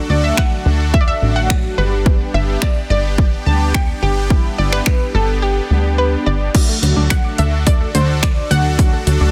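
A straight 4/4 dance-pop groove gives this euphoric, summery excerpt its drive, built on an overdriven, up-front house drum kit with a punchy kick, crash cymbal, hi-hat and finger snaps, beneath a funky, wave-folded analog bass that pumps with the sidechain. A round, warbling vintage pluck carries the melody with chorus and delay, while a dark, brassy synth with phaser and vibrato and a lush, bright supersaw pad sustain the chords over a D to G movement. After a silent gap from 5.4 to 6.5 seconds, the music returns with a tight, driving sequenced synth adding arpeggios in the background, all set in a digital ambience and a dense, heavily limited master.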